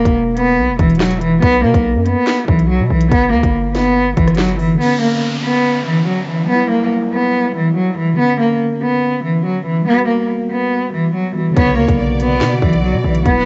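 A half-time drill groove in 4/4 opens this dark, cold hip hop excerpt, with a gritty, cassette-worn drum kit of hard-clipped kick, sharp snare, crisp hats, rim clicks and handclaps dropping out at 4.7 seconds and returning at 11.6 seconds, alongside a heavy, aggressive distorted 808-style bass. Over it an up-front bowed cello carries the melody with vibrato and portamento through tape echo, while a mellow tine electric piano enters with the accompaniment at 4.7 seconds and a brief electronic downlifter passes beneath. In the closing moments a lush violin section adds a second line and a sweeping, detuned pad with chorus and phaser sits in the background, all within a lo-fi home cassette sound dulled above 7.8 kHz.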